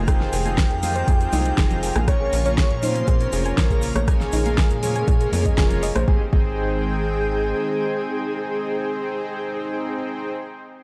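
This hopeful, expansive progressive house excerpt at 120 BPM in 4/4 opens straight into a drop in Ab major. A full, round octave-layered synth lead carries the melody with chorus, tremolo and vibrato, shadowed in the background by an airy, dreamy second lead with portamento and dub echo. Beneath them, a lush, thick unison pad holds sustained chords through chorus and phaser, while a tight, punchy sequencer bass drives over Fm7 and Bbm and a very quiet twinkling granular texture adds octave-up shimmer. An overdriven electronic kick sits up front with a deep house kit of fat snare, rim click and metallic hats, joined in the background by a grainy egg shaker and soft-handed, close congas. A gentle pluck with 12-bit sampler grit plays arpeggios, smooth supersaw stabs add weight, and several parts pump to the sidechain. At 6.1 seconds the kit, shaker, congas and texture stop, the kick and pluck fall away moments later, and the bass ends by 7.5 seconds, leaving the leads, pad and supersaw on Abmaj7 in a dark mix with light reverb and digital ambience.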